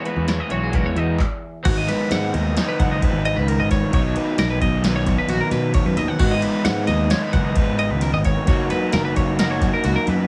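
A lightly reverberant, bright excerpt of math rock and midwest emo in 5/4 at 132 BPM, with an intricate, straight feel and chords moving from Emaj9 through G#m7, Bmaj7 and D#m7/F#. A double-tracked, overdriven raw garage guitar riff and an up-front electro analog drum machine, with a deep kick, punchy snare, metallic hats, handclaps and cymbals, drive the music alongside a direct, picked electric bass, while a compressed, clean twelve-string electric guitar spins high arpeggios through plate reverb. A scooped, twangy electric guitar with ensemble chorus sits in the background until 3.5 s, the band breaks for a brief stop at 1.2 s, and the kick and snare drop out from 9.8 s.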